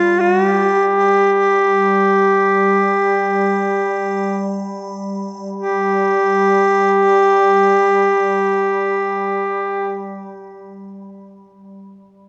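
A clear, up-front solo duduk sings a solemn, longing Caucasian lament in free time, its folk-style notes scooped and slowing down over the first 5.5 seconds, above a quiet, icy glass pad holding a crystalline G3 drone with chorus and its own reverb, the passage set in a moderate church reverb and colored by worn cassette tape whose pitch warbles and drifts, cut from a longer piece.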